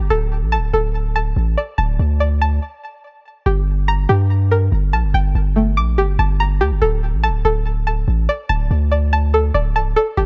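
Dark and menacing, this short half-time drill excerpt pairs a twangy, string-like resonator pluck playing bright arpeggios, treated with chorus and digital delay, against a long, deep, sine-toned 808-style bass that sits up front. Both parts drop out for a stop from 2.6 to 3.5 seconds before the second section brings a Gmadd9 chord and later a D5. The production is dry and dark, with little reverb.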